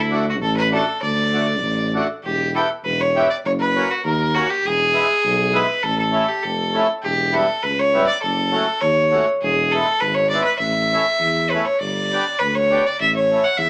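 Bouncy and jolly, this short alpine folk passage from a longer piece moves at 100 BPM in a straight 2/4, in the manner of an alpine dance band. A clear, earthy fiddle carries the melody from E4 to F#5, bowed by a single player with light vibrato and sitting up front in the mix. A reedy, full accordion supplies rich accompaniment between G3 and G4, while a mellow tuba holds the bass from E1 to E2 in a classical style, its light vibrato sounding distant and roomy. After a brief opening on D, the music shifts at 2.2 seconds into a longer second section that cycles through Em, F#, E and A, later touching F#m and G before landing on A at 13.0 seconds. A wet studio reverb with a 0.6-second decay surrounds the small ensemble.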